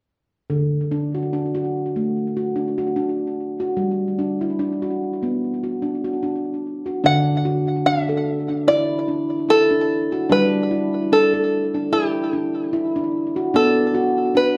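A wet studio reverb wraps this dreamy, gentle world meditative passage, which is cut from a longer piece, with both instruments sitting up front. A handpan opens at 0.5 seconds on its own, rolling out ringing arpeggios between D3 and A4; its stainless steel tone, sharp finger strokes and vintage, band-limited character are bathed in plate reverb and delay. At 7.1 seconds an open-back banjo joins with a fingerpicked melody between G4 and F#5, its acoustic, twangy, plunky voice adding a percussive bite under the same plate reverb and delay. The tempo is an unhurried 74 BPM in 4/4 with a light 55% swing on the sixteenths, set in D major. The harmony moves calmly from D to G, returns to D and G, and closes on Bm before both parts end at 14.6 seconds.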